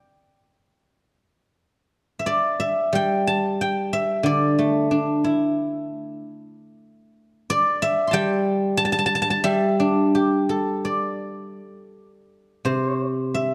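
A silvery, ringing guzheng, played up front with fingerpicks, carries this pastoral and elegant solo piece of Chinese traditional plucked-string music, spanning C3 to C6 in the G zhi mode at a flexible rubato pace of 78-94 BPM in 4/4, framed by a dark production and moderate concert-hall reverb, with the brief opening idea returning at 12.3 s before this excerpt from a longer work ends at 13.5 s.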